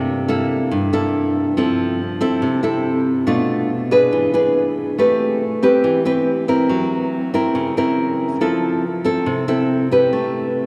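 Melancholic and intimate, this brief bossa nova excerpt in A minor at 140 BPM features a solo nylon-string guitar, fingerpicked up front with a fresh-stringed, classical tone and audible finger squeak, moving through chords such as Fmaj7, E7, Am9 and F#7#11 while a wet cathedral reverb with a 7.2-second decay fills the church-like space.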